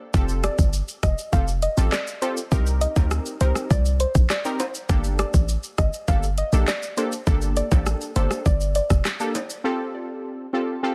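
This dense, heavily limited modern master sits dry, with lossy compression artefacts, carrying a sultry, bouncy dancehall groove at 101 BPM in G minor that is cut from a longer piece. An up-front electronic island pop kit with a tight kick, dark hats, handclaps, rim clicks and shaker drives it alongside a punchy, sine-toned short 808-style bass, while tube shaker and timbales add vintage acoustic colour in the background. Brassy, detuned synth stabs pump with sidechain and chorus through Fadd9, Cm7 and Gmadd9, under a soft, round pluck melody coloured by tape echo, and the stabs alone carry on after the drums stop at 9.6 seconds.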